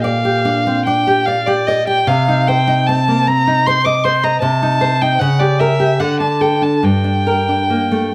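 A focused, vibrato-rich bowed violin sings a yearning, solemn melody up front in this brief fragment of a romantic duo in G minor, moving in a rubato 3/4 at about 69-79 BPM over a bright, fingerpicked classical nylon-string guitar whose finger squeaks are caught by close, detailed microphones in light reverb, as the harmony passes through diminished chords to D and settles on G minor by 6.8 seconds.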